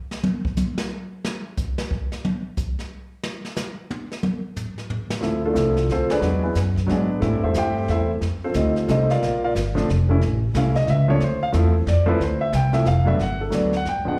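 A late-night, swinging jazz piano trio in a lilting three-four, this excerpt is cut from a longer piece and heard as a live club gig through the venue's sound system, with light reverb and a small room ambience. The brush drum kit opens alone with a short solo, its brushed snare, hi-hat, medium-tuned snare, toms and boomy kick carrying a slapback echo. At 5.2 seconds the piano and upright bass arrive together, and the concert grand takes over as the soloist through a chord sequence that moves from Dm7 through E7, Am7, F7 and Bbmaj7 before landing on Gmaj9 near the close. The piano sounds intimate and vintage, with smooth tone, deep lows, audible action noise and its own slapback echo, sitting up front. The pizzicato bass, woody with steel strings, sits up front as well, and the clip ends at about 14.2 seconds.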